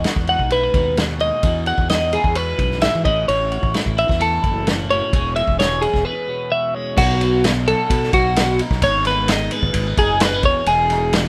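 This rough home demo sounds dry and close: a playful, intricate fragment of math rock and midwest emo in a straight 4/4, cut from a longer piece. One twelve-string electric guitar carries the accompaniment up front, its clean, compressed tone run through a phaser. A second twelve-string spins bright picked arpeggios in a higher register. Beneath them, a fuzz fingered electric bass growls with overdrive, and a loose indie drum kit in a small room brings a punchy kick, a medium-tuned snare, dark crash and ride cymbals, and a gritty, saturated, rolled-off sound. The harmony moves from Emaj9 through A6 to E6, a brief break arrives at 6.1 seconds, and from 7.0 seconds the chords shift to B7, G#m7 and Emaj7 before the upper guitar drops out at 11.1 seconds.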